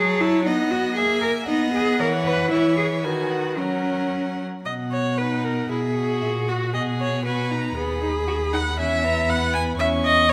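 A moderate recital-hall reverb surrounds this brief cut from a longer string quartet movement, with the viola and cello placed up front. The piece is a quick, cheerful and spirited classical-period movement in B major at 116 BPM in 2/4, played with a flexible, rubato feel. Two violins share a rich, focused, bowed tone with vibrato: the first carries the melody high in its range, while the second sings a supporting line beneath it, both at a softer level. The viola supplies a clear, intense accompaniment, and the cello anchors the bass with a smooth, even sound, all four players bowing with vibrato throughout the 10.3 seconds. The opening phrase settles on an F# chord before a new section begins at 4.7 s, returning to B and moving through colours such as E69 and C#madd9/E.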